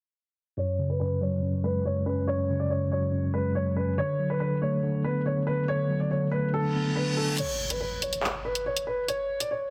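A dark, deep-bassed grand piano melody and a clean, mellow tine electric piano heard as if through built-in speakers open this tense, menacing half-time drill fragment at 141 BPM in F# minor at 0.6 seconds, moving from F#sus2 to D6 under a low-pass filter sweep, before an electronic reverse cymbal enters at 6.7 seconds and, at 7.4 seconds, an impact lands as the electric piano drops out and an up-front produced drum kit of crash cymbal, handclaps and bright hi-hats joins the piano for a chordless break, all set in light reverb within a dense, heavily limited modern master.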